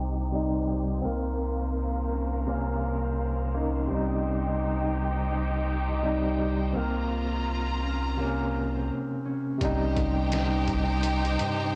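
A round, deep analog bass sits up front in this smoky, dark trip hop piece at 84 BPM in C phrygian, alongside a barky tine electric piano with tremolo and tape echo, a lush bowed string section and a ringing, thumb-plucked harp in the background, both strings and harp under filter sweeps until a brief break, before a compressed, pitched-down sampler-style drum kit with a thumpy kick enters at 9.6 s, the recording itself blown-out and overdriven with light reverb.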